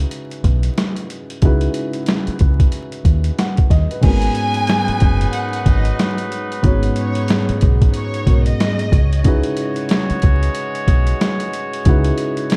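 Boom-bap hip-hop with a tough, moody edge, built on a dark, mellow baby grand piano with audible action noise, a round, punchy fingered electric bass, and a gritty, pitched-down sampler drum kit whose thumpy kick and snare sit up front with crash and hi-hat. At 4.0 seconds a lush, bowed violin section with vibrato carries the melody through a digital delay until 9.2 seconds, while a tight, vintage horn section adds delayed stabs to the end. The production is dry and dusky, wrapped in vinyl crackle, and the clip is cut from a longer piece.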